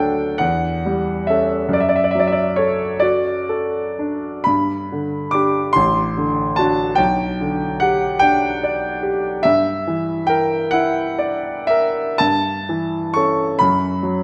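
Nostalgic and serene, this short passage from a longer romantic nocturne unfolds for solo piano in D major. The pulse is slow and flexible, moving at roughly 39-49 beats per minute in dotted quarters within 6/8, with rubato shaping each phrase. A clear concert grand carries the entire 14.2 seconds alone, spanning A1 to D6, and its open tone sits up front with a deep bass anchoring the harmony. The chords drift from A7/E through D/F#, G and D7/A toward a darker Em7b5/G near 9.5 seconds and an A7/G at 12.2 seconds before the harmony falls away at 13.6 seconds. A moderate scoring-stage reverb with a 1.7-second decay surrounds the instrument.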